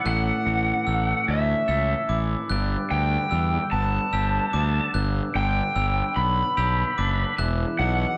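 A bright, overdriven slide guitar carries the melody up front in this short post-rock excerpt, its singing line treated with slapback echo. Beneath it, a dark, round fuzz bass sits close and heavy, while a clean, twangy electric guitar fingers arpeggios with its own slapback echo. A glockenspiel struck with hard plastic mallets adds sparkling, bell-like arpeggios high above. In the background, a pedal steel guitar holds sustained chords with a subtle chorus. Moving slowly at 49 BPM in 6/8, the music shifts from A to G and comes to rest on Emadd9 near 7.4 seconds, all under a light reverb that gives it a soaring, hopeful mood.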